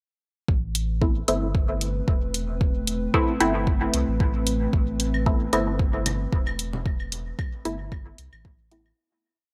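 Muted, detuned sawtooth chord stabs stand up front in this deep, hypnotic dub techno piece. They are sparse, echoing filter plucks built from one shape moved in parallel, treated with chorus, phaser, sidechain pumping and dub echo, and they enter at 1.0 seconds. Beneath them a layered four-on-the-floor electronic kick, re-recorded in a small room, drives a 113 BPM groove in A minor with a light 16th-note swing, while tape-warm closed hi-hats from a large room carry programmed hats and backbeat. A round sine sub bass plays a dub-style line with fast attack and sidechain pumping, and a moody, wave-folded analog pad with a sub octave holds dark sustained chords over Amadd9 harmony, its slow attack thickened by chorus and pumping. Echoing claves and low congas join at 5.1 seconds, shortly before the piece fades out from 6.1 seconds, all set in light reverb and digital ambience.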